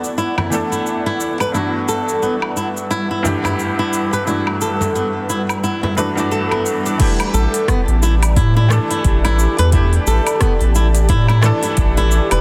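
A muted, intimate felt piano with audible action noise, an ethereal detuned pad under a filter sweep, and a crisp, overdriven electronic kit recorded in a large room open this earthy organic downtempo excerpt, joined at 0.2 s by a bright, fingerpicked flamenco guitar with finger squeak, delay and shimmer reverb, while a band-limited vintage frame drum sounds through the opening before a deep, tape-warm kick arrives at 7.0 s and a round, dark analog bass with tube saturation and sidechain pumping settles in up front over E minor.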